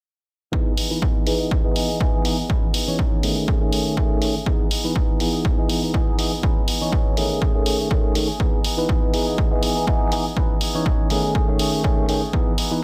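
A barky, clean tine electric piano played through a combo amp carries the chords in this funky, sunny filtered disco house excerpt at 122 BPM in E major, its phaser, low-pass filter and sidechain pumping shaping the cycle of Emaj7, C#m9 and Amaj7#11/D# under a filter sweep running from 0.5 to 12.8 seconds. A clean, picked electric guitar, recorded direct and compressed, sits in the background with a riff that also pumps and passes through a low-pass filter. An up-front, punchy analog kick and an analog hi-hat with its own pumping, both re-recorded in a large room, drive the swung 4/4 groove, all set in light reverb.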